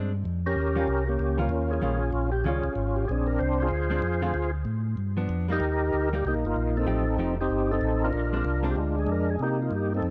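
Soulful and bluesy, this brief excerpt of a soul jazz organ trio swings at 190 BPM in Bb mixolydian, moving through chords such as Bb9, Eb9, G7 and F9. A mellow, round tonewheel organ holds down the bass with clean key click and a slow rotary speaker. Alongside it, a percussive tonewheel organ enters at 0.5 seconds to carry the melody, lightly overdriven with second harmonic percussion and chorus vibrato, while a dark, fingered hollow-body jazz guitar comps quietly underneath until 8.8 seconds, all in a light reverb.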